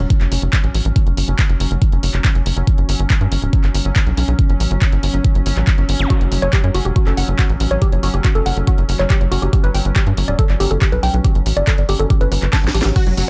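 A pulsing, detuned gated texture with chorus, reverb and 12-bit sampler grit opens this driving psychedelic trance excerpt at 140 BPM alongside a tight, nasal sequencer bass, a knocking electronic kick up front and a drum kit of cracking snare, bright hi-hats, handclaps and crash, both kick and kit carrying overdrive; then a faint zap at 6.0 seconds ushers in a woody, wave-folded pluck riff with cassette-tape colour and digital delay, and a drum fill leads to a punchy supersaw stab with phaser and a jingly tambourine at 13.0 seconds.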